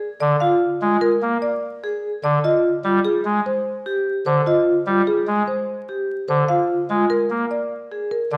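A ringing, metallic vibraphone opens the fragment with arpeggios, played with medium hard mallets and a medium motor vibrato that gives it a vintage, band-limited color up front. Within a fraction of a second, a woody marimba on padauk bars enters with the melody, its tone close-miked, dry and full. At the same moment, a chamber organ adds accompaniment with a soft reed oboe solo stop, where audible chiff and tremulant sit up front in the mix. This bright, hypnotic minimalist pattern music moves in a straight 5/4 and shifts from an open, unharmonized start to a rootless Abmaj7 at 2.4 s, then to Bb5 at 6.5 s. A moderate large studio reverb and a layer of vinyl crackle surround the short passage, which is cut from a longer piece.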